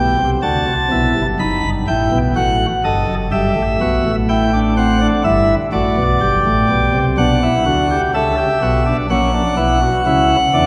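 Set in a straight 4/4 pulse, this serious, driving baroque-style fugue in three parts is played by a solo chamber organ whose full principal chorus, up front with a crisp chiff, spans from a deep F#1 to B5 and moves through Em, B7/F#, Em/G, Bm and F#7/A# inside a wet church reverb, all within a brief 10.7-second excerpt cut from a longer piece.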